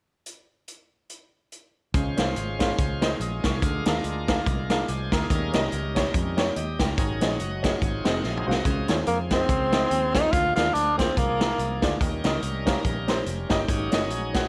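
A breathy tenor saxophone steps up front for a short jazz solo starting at 9.1 s, its soft attack, vibrato and scooped notes lending this uptempo gospel passage a jubilant yet reverent glow. A swinging big-band drum kit opens the piece alone at 0.3 s, with a boomy kick, a medium-tuned snare, hi-hat and toms sounding roomy and distant, and a drum fill ushers in the closing stretch. From 1.9 s, a woody upright piano with short sustain supplies accompaniment, a bright tonewheel organ shouts lightly overdriven sustained chords through a fast rotary speaker, and a round, dark fingered electric bass anchors the low end. The harmony cycles from Dbmaj7 through Bb7/D and Eb7 to Ab7sus4, swung in 4/4 and framed by a moderate plate reverb and small room ambience. The music is cut from a longer piece.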